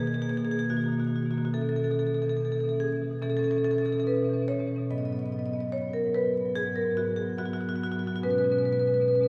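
Warm and playful, this contemporary classical piece for solo marimba moves at a rubato 72 BPM in 4/4. Played with medium mallets and sitting up front, the marimba ranges from G#2 to D#5 through Bmaj7, Aadd9/B and G#m7 before settling on Bsus2 near 8.2 seconds. The sound blooms in a long cathedral-like reverb with vinyl crackle, in a short passage cut from a longer work.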